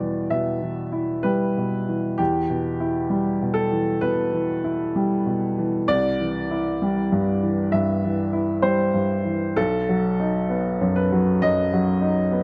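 Neoclassical minimalist piano in E minor at 65 BPM with a rubato feel, this reflective, melancholic excerpt features a solo baby grand piano, clear, open and up front with long sustain, spanning B1 to E5 in light reverb as the harmony moves from Em to C at 5.9 seconds and to B at 9.6 seconds.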